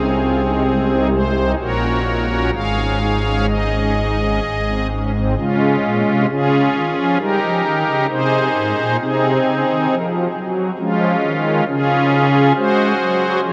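Reverent and serene, this brief classical chorale-style passage in 3/4, cut from a longer piece, features a solo pipe organ on soft, shimmering string and celeste stops with a romantic voicing, heard up front yet bathed in a huge, echoing reverb that suggests a vast space, moving with a rubato feel through gentle chord changes that settle at 4.4 seconds before a second section begins at 5.4 seconds.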